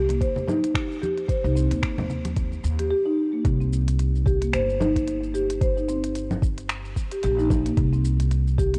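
A swung sixteenth-note groove in 4/4 at 111 BPM drives this organic downtempo excerpt, built on a soft, overdriven electronic kick and an organic electronic kit of crisp hi-hat, shaker, finger snaps and congas, with its own overdrive. Bright, close and dry acoustic congas add a separate layer from 0.1 to 2.9 seconds. Up front, a soft-mallet marimba with mellow, round padauk bars plays arpeggios in C minor pentatonic through tape echo, while a growly, woody pizzicato upright bass on steel strings holds the low end. The harmony rests on Eb/C before settling on C minor at 3.5 seconds, giving the mood a warm, mystical cast. Light reverb and a small-room ambience sit under a worn cassette-tape character whose warbly pitch drift gives the whole recording an aged, hazy feel.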